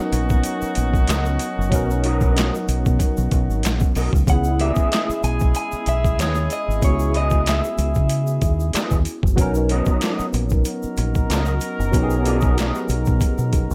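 R&B and neo-soul in an introspective, sultry mood: a barky, lightly overdriven tine electric piano with ensemble chorus and distant, roomy warm horn stabs open the passage. They are joined by a gritty, pitched-down boom bap drum kit with a thumpy kick, high-tuned snare, hi-hat and handclaps, which sits up front with a round, punchy dub electric bass and an egg shaker with finger snaps. A twangy, fingered electric guitar second line follows, while a compressed, picked guitar through a small old amp carries a slapback-echoed melody from 4.3 to 8.7 seconds over C#m9, within a progression that moves from Bmaj9 to C#m9 and back to Bmaj9.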